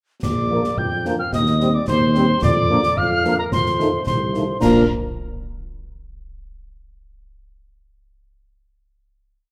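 This brief, rousing and festive military-style march for wind band opens at 0.2 s at 110 BPM in a straight 2/4, in Bb major. A dark, distant trumpet section carries the melody while a bright, wooden piccolo, pure-toned and up front with vibrato and tongued notes, doubles the tune at the octave. Beneath them a mellow, roomy tuba plants the bass on the beats, and a marching snare rides over concert bass drum on the beat, with clash cymbals of a shadowy colour. From 0.5 s a warm French horn section adds after-beat chords in the background, and a close-miked trombone section with light vibrato supplies short accented chords and sustained harmony. The chords move from Bb through Cm/Eb, Bb/F and F7 before the band settles on a final Bb chord at 4.6 s, all wrapped in a wet, large studio reverb.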